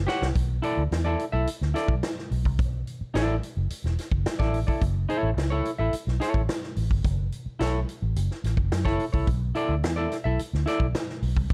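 Cool and driving, this funk excerpt moves at 108 BPM in a straight 4/4 in B minor, opening with a short drum fill before the groove settles on Bm7 and F#m7. A round, foam-muted vintage fingered electric bass sits up front in the low register beneath a bright, clean, picked semi-hollow electric guitar, while an acoustic big-band drum kit with a punchy kick, medium-tuned snare and hi-hat carries the natural sound of a big room. The production is dark with light reverb, and the guitar stops at 10.9 seconds as bass and drums play on to the end.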